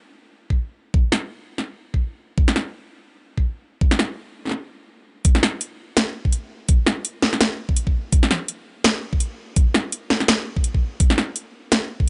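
Drum and bass at 167 BPM in a tense, spacious half-time feel, with a 57% swing on the 16ths, built from a layered electronic kick drum entering at 0.5 s and a drum kit of metallic hi-hats and a cracking snare arriving at 1.1 s. Both sit up front, tape-warm and re-recorded in a small room; the kick has a knocking character. A stop at 4.5 s gives way to a drop at 5.3 s, all captured in a dry, gritty hardware sound with little reverb and a dulled top end.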